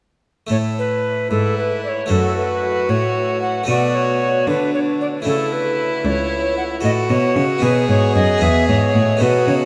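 This short excerpt from a longer classical piece in baroque style opens at 0.5 seconds with alto recorder, harpsichord and cello sounding together, a sonata movement with continuo in A major, moving in a flowing 6/8 at 76 dotted-quarter beats per minute. The alto recorder carries the melody up front, close and airy, its woody tone marked by a crisp chiff on each attack and a warm vibrato. Beneath it a bright, plucked harpsichord of French style with a single set of strings fills in the accompaniment, while a single bowed cello supplies a focused, rich bass with vibrato. At 1.3 seconds a single violin joins with a smooth, even second line, also bowed and sitting forward alongside the recorder. The harmony moves from A through F-sharp minor and B minor seventh toward a close on B and then E, and the whole ensemble rings out in a vast cathedral space whose long, echoing reverb lends the passage a radiant glow.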